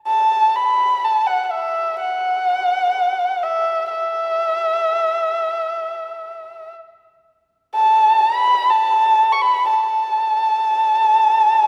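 Graceful and festive, this brief passage from a longer Chinese traditional piece features a solo erhu in a free, rubato feel around 62 BPM. The single bowed erhu sits up front with a dark, woody tone and a smooth top, singing between E5 and C#6 with vibrato and portamento. A wet concert hall reverb surrounds the instrument, lending a lingering 1.9-second decay.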